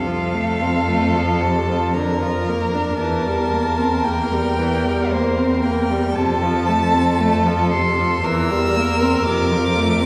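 A single first violin carries the melody with a rich, vibrato-laden tone, its line smooth and even in its upper register. This is a slow, serene romantic movement for string quartet in 3/4, played with a gently flexible rubato. A clear second violin holds a close, steady second line just beneath it, while a focused viola fills in the accompaniment from the middle of the texture. The cello anchors the bass with a warm, expressive tone touched by vibrato and portamento. The harmony moves gently between tonic, subdominant and dominant colours before settling home at 9.3 seconds, all within a 10.1-second passage cut from a longer piece. A generous concert-hall reverb and a listening position further back in the room give the quartet a warm, spacious glow.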